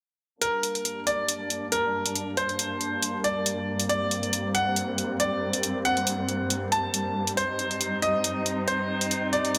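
A moderate, lush hall reverb with a touch of small-room ambience surrounds this menacing, aggressive fragment of heavy wobble dubstep, cut from a longer piece and set at 138 BPM in 4/4 with a half-time, lightly swung feel in G harmonic minor. A bright grand piano carries the melody up front, its brilliant, intimate tone revealing audible action noise and long sustain, with dub echo trailing its notes. Beneath it, a dark chamber string section holds sustained, bowed chords with vibrato, a soft attack and a smooth top, roughened by vintage 12-bit sampler grit and shaped by a low-pass filter and a filter sweep. An overdriven, layered electronic hi-hat, re-recorded in a small room, drives the drums close in the mix. All three parts play together from 0.4 s, the harmony resting on G minor before moving to C minor over G at 7.4 s.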